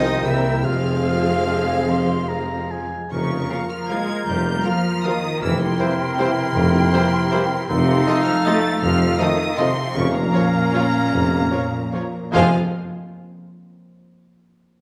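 A full orchestra opens at once in a dark, bittersweet ballroom waltz in F minor, moving in 3/4 with a rubato feel between 138 and 172 BPM. The violin section carries a lush, focused melody high above, while a very quiet second violin line, a pure-toned flute section and a warm solo oboe weave supporting lines beneath it. Violas fill in the accompaniment from the background, cellos and double basses lay a rich, even bowed foundation, and a distant, roomy tuba anchors the lowest register. Mellow French horns and trombones hold faint sustained chords, a solo trumpet adds smooth stabs, and a ringing harp plays arpeggios. A clear solo clarinet joins at 3.1 seconds. The recital hall reverb is wet, and the harp carries on to 13.6 seconds as this cut from a longer piece settles on F minor.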